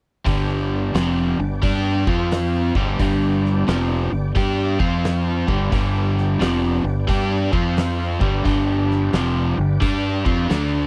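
Swung eighths in 4/4 drive this swaggering, raunchy blues rock and southern rock power-trio fragment, cut from a longer piece, where a bright, picked, double-tracked overdriven electric guitar riff sits up front over a growling fingered bass with overdrive and a punchy attack, an oversized, low-tuned acoustic drum kit with a fat snare, saturated dark tone and stone-room character on hi-hat, kick and snare, and a thick, overdriven tonewheel organ holding sustained chords in the background through a slow rotary speaker with chorus vibrato and key click, all captured in a dry, close 1970s-style studio sound as the harmony shifts between G and F5 from 0.3 seconds onward.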